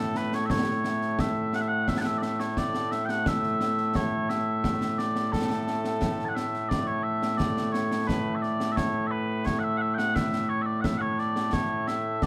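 Scottish traditional pipe music in A major at 87 BPM and a straight 2/4, proud and ceremonial, with mellow, sweet small bagpipes carrying a continuous solo melody up front from the start while concert snare and bass drum enter at 0.2 seconds with bright cymbals and a small-room acoustic sound, all captured by close, detailed microphones with light reverb in this short cut from a longer piece that moves into a new section at 6.7 seconds.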